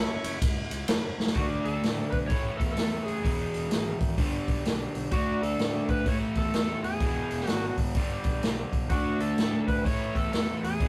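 A swung 4/4 groove at 127 BPM drives this raunchy blues-rock and southern-rock excerpt, with a growly, fuzz-drenched fingered bass in the background from the opening and an up-front vintage drum kit, tight in the kick with a rolled-off top, hitting a fill at 1.1 seconds. At 1.4 seconds a raw, double-tracked garage guitar enters with a picked overdriven riff, while an overdriven slide guitar played with fingerpicks carries the melody over a D5, A5, E and G progression. It all sits in a rough rehearsal-room sound with light reverb.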